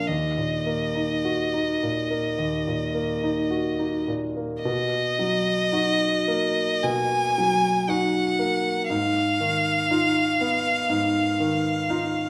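Romantic classical music for violin and concert grand piano, elegiac and melancholic, unfolds with an unhurried rubato feel in this fragment cut from a longer piece. A single bowed violin carries the melody up front, its tone clear, smooth and even with vibrato, while the piano's accompaniment brings deep bass and a vintage character. Both sit in a wet recital hall reverb, and the harmony moves from Ebm to Bmaj7 at 4.6 seconds and on to Fm7b5/Ab at 8.9 seconds.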